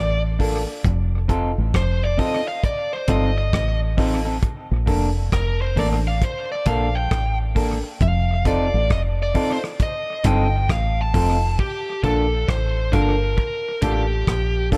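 Laid-back and uplifting, this slow roots reggae excerpt in Bb major at 67 BPM, with a swung 16th feel, opens on a biting, overdriven lead guitar solo dripping with dub echo until 11.6 seconds, carried by a deep, round, foam-muted fingered bass up front, a clean semi-hollow electric guitar with its own dub echo, woody, slightly detuned upright piano stabs in the background, and a cloth-damped, thuddy drum kit of tight kick, hi-hat and rim click fed through analog delay, all in a dry, echo-heavy mix moving between Bbmaj7 and F7.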